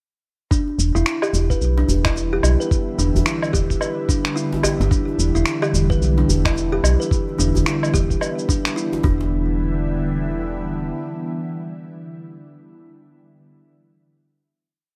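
Lightly reverberant and mystical, this organic downtempo piece sets a hollow, ringing kalimba arpeggio, softened by a low-pass filter and delay, over a gritty, thumpy electronic kick, an electronic cabasa, finger-snap and woodblock beat, and a tight, cracking djembe in the background, while an up-front woody FM bass with sidechain pumping plays a syncopated riff and a bright, airy pad with chorus, phaser and pumping sustains an Em7 chord past the final hit until 12.0 seconds.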